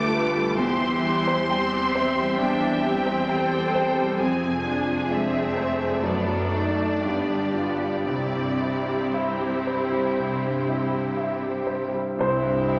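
Classical romantic music for piano and orchestra in C major, passionate and lush at a rubato 55-68 BPM, where a clear, up-front grand piano with long sustain shares the melody with distant, smooth violins, while a second, intense violin line, focused violas and background cellos with vibrato fill the harmony, and at 12.2 s dark French horns and bowed double basses enter beneath, all set in a wet scoring-stage reverb.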